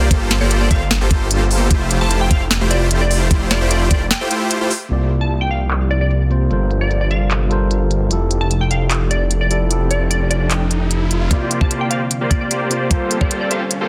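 A dense, heavily limited mix with light reverb carries this lush, euphoric half-time future bass excerpt. It opens on a drop of huge, bright supersaw chords with sidechain pumping, a thick, saturated detuned saw bass that stops at 11.3 seconds, a knocking electronic kick and a trap kit with a sharp snare and crisp hats, all under a glassy, crystalline wavetable pluck melody with digital delay. A clean tine electric piano with tape echo arrives at 4.9 seconds, followed by a very quiet, ethereal pad and a background riser before the supersaws and kick return for the build-up.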